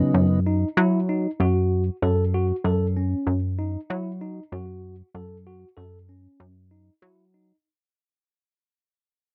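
This short cut from a longer progressive instrumental opens with a tine electric piano and a plucky analog bass together, both fading out across its full 7.6 seconds. The feel is driving and intricate, moving at 96 BPM in a straight 5/4 in F# dorian over an F#5 chord. The bass carries the low end with a punchy, funky, up-front tone that blends sawtooth, square and sine waves, roughened by ring modulation and wave-folding and shaped by a fast-attack filter pluck that decays. Above it, the electric piano plays warm, clean arpeggios in a middle register through its built-in speakers, with a slapback echo. It is also up front, though a little quieter than the bass. The recording is dry and close in a 1970s studio style, with little reverb.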